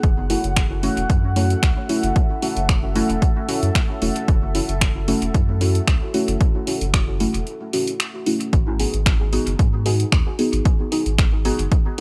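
Meditative, cavernous dub techno at 113 BPM with a light swing, where a dry, punchy electronic kick sits up front beneath dark, layered finger snaps and hi-hats soaked in dub echo, a round sine sub bass pumping with the sidechain, nasal chorused and phased chord stabs that enter at 0.3 seconds and take a filter sweep from 8.5 seconds, and a detuned, moody sawtooth pad sustaining F#m7 until it drops out at 8.5 seconds as the harmony moves to G#m7 after a brief break.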